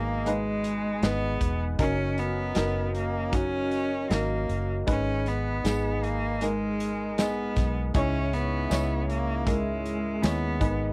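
A dry, close recording with a 1970s studio feel frames this heartbroken, longing pop ballad in G# minor at 78 BPM, cut from a longer piece, as the chords move from G#m through F#6 back to G#m and on to C#m. A clear, bowed cello with vibrato and a slapback echo carries the melody up front over a woody, intimate upright piano with audible action noise, while a dark French horn section holds sustained chords in the background and a vintage, foam-muted electric bass adds a round low end. A loose, acoustic indie drum kit with a punchy kick and rolled-off top joins at 0.3 s, and a jingly tambourine enters quietly in the background at 5.7 s.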